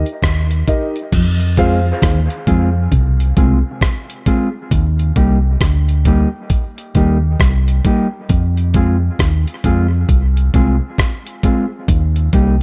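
An echo-heavy digital ambience surrounds this spacious, hypnotic dub reggae excerpt at 67 BPM in F dorian, its swung 16ths moving between Eb and Fm. A round, punchy fingered electric bass and a gritty, compressed sampler-style kit with thumpy kick, hi-hat, rim click and crash sit up front, while a woody, slightly detuned upright piano drops dub-echoed stabs over the opening break until 1.8 seconds. From 1.1 seconds a clean, fingered electric guitar plays a short riff, and a very quiet second guitar adds dub-echoed accompaniment from 1.6 seconds onward.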